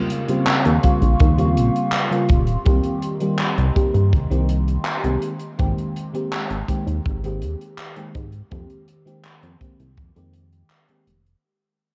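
Vaporwave at 82 BPM in 4/4, nostalgic and faded, where a dreamy, detuned FM electric piano with a soft pad layer, treated with phaser, lush chorus, cassette tape and tape echo, sits up front over a lo-fi, slow-blooming tape-like pad carrying 12-bit sampler grit, a glossy chorused synth bass with tube saturation entering at 0.7 seconds, a punchy up-front kick and a crisp, airy fusion kit of handclaps and hi-hat, the whole fragment steeped in small room ambience and worn, pitch-drifting cassette warble as it fades out through Eb13, Cm7, Abmaj9 and Fm11.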